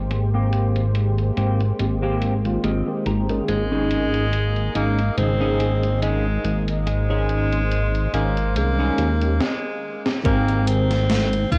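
This vaporwave fragment feels nostalgic and dreamy, with a lightly swung groove and a hazy cassette-tape finish under light digital ambience. A lush, detuned unison pad holds sustained chords in the background beneath a filter sweep, while a glossy, up-front chorused synth bass carries the low end and a gated 80s drum machine ticks out hi-hat and snare with gated reverb and a gritty sampler edge. A dark, clean semi-hollow electric guitar plays a chorused, tape-echoed riff and adds a fill at 2.2 seconds, and a tine electric piano comps in the background through what sounds like built-in speakers. From 3.5 seconds, a clear tenor saxophone takes the melody with scooped notes and a vintage pop tone as the harmony moves from Abmaj9 to Eb7sus4/Ab. After a brief break and drum fill, an overdriven, thumpy electronic kick arrives at 10.2 seconds as the Abmaj9 chord returns.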